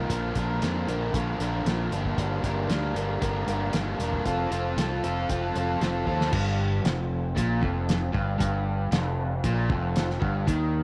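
Classic rock with a driving, swaggering straight feel, this short excerpt pairs a crunchy, double-tracked overdriven guitar riff, up front with spring reverb, against a growling, bright fingered bass and a muffled, cloth-damped drum kit with a fat snare and dark cymbals, all in a small room, moving through Bb, Gm and F before a drum fill at 6.1 s leads into a new section at 6.3 s.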